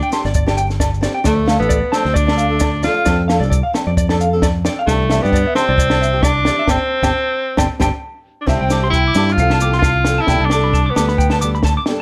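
A clear tenor saxophone carries the melody up front in this sunny, carefree highlife guitar band excerpt, its jazz-style line colored by light vibrato and scooped notes with a vintage character. The tempo sits at 133 BPM in 4/4 with a gentle swing on the sixteenths, in C major, moving through chords such as Gsus4, Dm, F6 and Cadd9 before settling on C. High above, a clean, compressed electric guitar picks arpeggios touched by slapback echo, while a parlour-style steel-string acoustic guitar adds picked accompaniment in the middle register. A round, dark fingered electric bass stands forward, and a compact cocktail drum kit with a punchy kick and high-tuned snare keeps a smooth, rolled-off groove, with ringing agogo bells in the background and grainy, mellow maracas close and dry. The band hits an accent from 6.7 to 8.5 seconds, with the drums adding a fill from 7.6 seconds, leading into a new section at 8.5 seconds, all in a dry space with little reverb.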